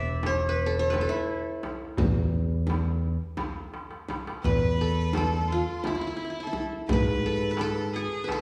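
A bright-edged, plectrum-plucked qanun opens this festive, stately Turkish makam ensemble piece in E makam hicaz, over a growly fingered electric bass, with a crisp metal-shell darbuka set in the background and a deep, close frame drum joining within moments. The music moves at 172 BPM in a straight 7/8. After a drum fill from 3.7 s, a clear, nasal violin with light vibrato and an airy bow enters at 4.4 s as a second line, all heard in the reverberant ambience of a recital hall.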